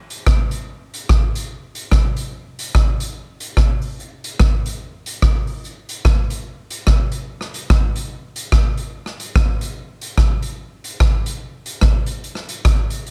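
The recording has a dry sound with little added reverb, yet the drum kit itself comes across as polished and airy, with the spacious character of a big room. This is an upbeat, joyful ska passage in 4/4, cut from a longer piece, with a swung eighth-note feel. A street-band acoustic drum kit carries the whole passage, sitting up front from 0.1 s to 13.1 s. Its hi-hat, rim click and boomy kick drum make up the sound. The single section runs from the start to 12.2 s, and the kit keeps going briefly past that point before the cut.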